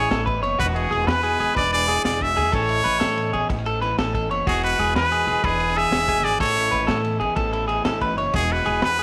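A straight 12/8 pulse at 124 BPM drives this danceable, joyful highlife guitar band cut, taken from a longer piece in E major. A crunchy breakbeat kit enters at 0.1 s with a punchy kick, a high-tuned snare and dark ride cymbal; its small-room sound is gritty and saturated with a rolled-off top. Underneath, a pizzicato upright bass on gut strings gives a woody, thumpy low end. A clean, picked electric guitar fills in the accompaniment, while a second, slightly broken-up guitar sits up front with compressed arpeggios and a slapback echo. Leading the tune is a trumpet with a straight mute, brilliant and nasal with light vibrato, carrying a pop-style solo melody bathed in plate reverb. The harmony circles between Aadd9, Eadd9 and E7 over a moderate studio ambience.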